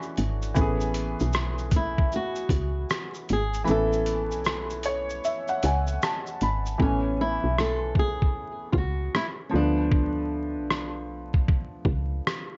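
Cosy and dreamy, this lo-fi hip hop excerpt in A major drifts at 77 BPM with a swung 16th-note feel, its felt-muted upright piano comping softly through a cassette-tape haze, plate reverb and audible action noise over Dmaj9 and Amaj9 chords that turn to Dm6 near the end. A woody, round FM bass and a compressed, pitched-down sampler drum kit with a thumpy kick, rim click, shaker and 12-bit grit sit up front, though the kick drops out from 3.7 to 6.8 seconds and the hi-hats fall away after that. From 1.8 seconds a fingerpicked flamenco guitar with fresh strings carries the melody, softened by a low-pass filter, all wrapped in small-room ambience and vinyl crackle.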